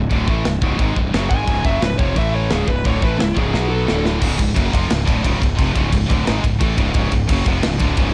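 A growly, fuzz-laden fingered bass sits up front in this aggressive heavy metal excerpt, driving a straight 4/4 at 176 BPM in C# phrygian dominant. Beside it, a tight studio drum kit with a medium-tuned snare and a warm, mid-forward sound pounds out crash, ride, kick and snare. Three picked rhythm guitars, one distorted with high gain, one overdriven and double-tracked, and one scooped, play the riff together in the background with a bright edge. At 1.3 s a distorted high-gain lead guitar enters with a shadowy, delay-tinged melody that runs until 4.0 s, overlapping a drum fill that arrives at 3.5 s. From 4.2 s the band drops into a half-time feel, returning to C# after a passage through A5, C#5, B5 and D5, all in a dry, brooding production.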